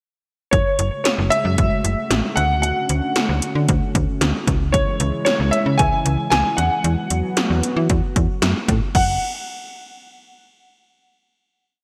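A straight drum-machine beat in 4/4 at 114 BPM drives this short synth-pop piece in F# minor, its punchy kick, gated snare and metallic hats sitting up front in the mix with a gated reverb on the kit. Beneath it, a snappy, sequenced FM bass with a fast, metallic attack anchors the low end, while a smooth sawtooth-and-triangle analog pad with a sub octave and chorus holds sustained chords. Over the top, a present, polished grand piano with short sustain carries a motif-based melody between C#5 and G#5, colored by analog chorus and digital delay. The chords move from F#madd9 through Dmaj7 and C#m to Esus2, giving the verse its melancholic, cool mood before the parts stop around 9 seconds and a final note rings until 11.1 seconds. A lush hall reverb and bright 1980s-style digital production frame the whole piece.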